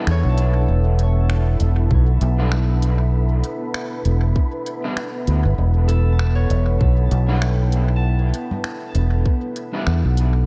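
A round, dark fingered electric bass sits up front in this deep, hazy ambient dub excerpt at 98 BPM in E dorian on an Em7 chord, joined by a tight, tape-warm electronic kick from 1.9 seconds, an organic electronic kit of congas, finger snaps and smooth hi-hat with dub echo, a moody detuned sawtooth pad holding sustained chords with chorus and reverb, ringing fingerpicked Celtic harp arpeggios trailing a diffuse delay, slightly broken-up electric guitar stabs with analog chorus and dub echo in the background, and an airy, breathy wind-like noise texture entering at 1.5 seconds, all set in a light digital ambience.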